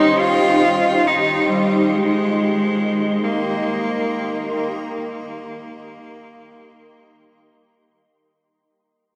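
Unfolding in free time, this brief ambient fragment, cut from a longer piece, drifts in a reflective, melancholic mood over a single Cm7 harmony, tuned slightly below standard pitch. A single bowed cello carries the melody up front between G3 and F4, its clear, earthy tone given a biting edge and light vibrato, while a diffuse ambient delay trails behind its phrases. Alongside it, a granular cloud pad holds sustained chords from Eb4 to Eb5, a blurred, detuned, evolving haze with slow attacks and long releases, mellow and close in the mix. Far in the background, a breathy, wind-like tuned noise texture hovers on a high C6, airy and shadowed by its own reverb. The whole recording sits in a huge, wet space with an eight-second reverb tail and a dark production, fading out across its length until the noise texture lingers last at 8.5 seconds.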